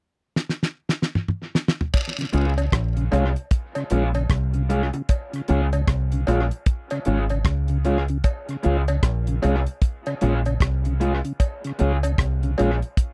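A dry, close 1970s-style studio sound frames this sunny, uplifting roots reggae cut, where a damped 70s drum kit with fat snare and tape echo opens on a fill before a foam-muted, punchy dub bass, a mellow tonewheel organ with key click and slow rotary speaker, a slightly broken-up lo-fi guitar with harmonic tremolo and dub echo, and cowbell with jawbone-type rattle all arrive around 2 seconds on a Db chord.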